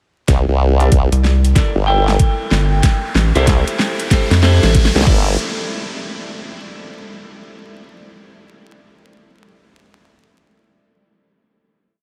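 A playful, gritty glitch hop build at 94 BPM in G dorian opens at 0.3 s with a chorused, wobbling formant-sweep bass, a knocking, up-front electronic kick and a swung dubstep kit of huge snare and metallic hats, soon joined by dark, syncopated clean electric guitar chord stabs that pump under a filter sweep and analog delay, a rubbery, hollow square bass playing chopped phrases, and a riser from 1.5 s, all wrapped in a dreamy, reverb-soaked mix with vinyl crackle before the final hit at 5.4 s.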